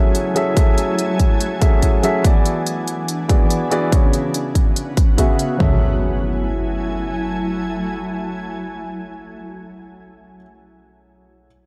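A warm grand piano with dub echo and a shimmering, detuned pad, both pumping, open this dreamy, bittersweet future bass fragment, joined by crisp electronic hats and a punchy, up-front dubstep kit of kick and toms in a swung half-time feel until an electronic impact arrives at 5.6 s, after which the pad drops away at 9.7 s and the piano carries on beside the fading impact over a dark, lightly reverberant mix with a faint mains hum.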